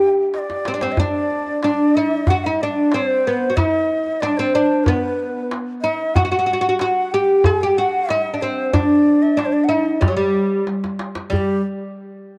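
A plucked oud, a breathy low ney and a tombak all begin together, and the tombak plays a short fill at 0.3 seconds in this festive, warm Persian modal ensemble in G dastgah chahargah. It moves at 93 BPM in a straight 4/4. The fretless, double-strung oud carries the melody, sounding woody, deep and up front. Above it, the end-blown reed-cane ney holds a second line with a bright, reedy tone, a crisp attack and vibrato. The tombak sounds tight and hard-handed, adds another fill at 10.7 seconds, and the three parts stop at 11.6 seconds in this cut from a longer piece. Light reverb gives the whole ensemble the feel of a small room.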